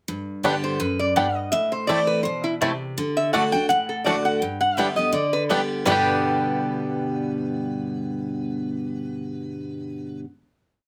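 Close, detailed microphones and a light reverb give this short bluegrass piece an intimate, present sound. A bright, full-bodied dreadnought guitar with fresh strings opens at 0.1 s, sitting up front with alternating bass and strum and bass runs. Banjo and mandolin join almost at once: the twangy, percussive banjo plays three-finger rolls and off-beat vamping, while the woody, double-stringed mandolin adds a chop on the off-beats. Over them the lap resonator guitar carries the melody, a metallic, nasal slide line played with fingerpicks as a fiddle tune in running eighth notes, placed up front and a little louder than the other parts. A swung feel and a simple G, Am, D, G progression keep the mood joyful and virtuosic. At 5.9 s the band settles onto a final chord that lasts until 8.7 s, and the piece ends at 10.2 s.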